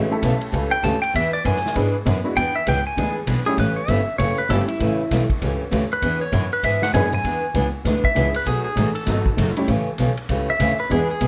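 A clean, up-front pedal steel guitar takes the solo with fingerpicked slide lines and volume swells over a cheerful, swinging western swing groove at 197 BPM in E mixolydian, backed by a jangly, detuned honky-tonk upright piano that drops out from 4.7 to 6.9 seconds, a bright, full-bodied picked acoustic guitar with audible finger squeak, a dark, veiled bowed double bass played muted, and a natural big-room drum kit with a punchy kick, all in light reverb.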